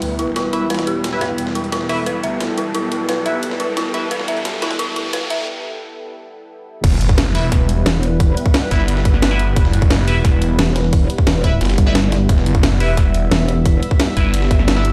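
This excerpt of dark, mechanical technical drum and bass in E minor at 176 BPM opens on a build-up: a sweeping, full-bodied resonant pad holds sustained chords with chorus and sidechain pumping, while a thick, swirling detuned saw bass sits up front with phaser and tube saturation. Around them, an airy, ethereal pad drifts in the background with ensemble chorus and its own reverb. An eerie, inharmonic synth bell plays arpeggios through chorus and delay. A nasal, band-passed chord stab adds bright phased hits, and the bell and stab both move under filter sweeps. Two drum kits run together: a gritty, compressed breakbeat sampler kit sits in the background, and an overdriven drum and bass kit brings a cracking snare, bright hats and crash cymbal, while a riser climbs toward a short break at 5.5 seconds. The drop lands at 6.8 seconds with an electronic impact and a tight, overdriven kick pushed up front, and the stab returns at 7.3 seconds. 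An aggressive, metallic FM wobble bass with chorus growls low at 7.9 seconds and again from 10.6 seconds, all over a dry mix with a touch of stone room ambience.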